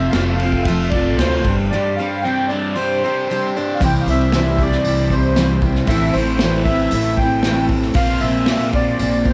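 Folk rock with a heartland-rock, open-road feel, this excerpt moves at a straight 115 BPM in C major over chords such as F, Gsus4 and Amadd9, with a reedy, sweet accordion carrying the melody against bright, full-bodied picked steel-string acoustic guitar and a dark, overdriven, double-tracked electric guitar riff that sits up front with phaser. A woody, thumpy pizzicato upright bass and a distant, roomy unplugged drum kit played with bundle sticks, with dark cymbals and a punchy kick, anchor the groove, while the accordion, both guitars and the drums carry a cassette-tape tint. From 3.8 seconds a very quiet tonewheel organ adds smooth, clean sustained chords with key click and rotary speaker, and at 4.3 seconds a jingly tambourine joins in the background, all in a dry, homemade-sounding space.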